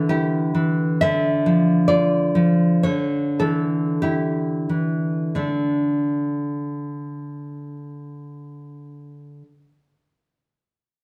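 A fingerpicked nylon-string guitar opens this wistful, melancholic romantic solo in a free rubato 2/4, its woody, full-bodied tone with the dull edge of old strings sitting up front in a lush recital-hall reverb, slowing through the first 5.4 seconds before a second section begins and the guitar falls silent at 9.4 seconds in this short cut from a longer piece.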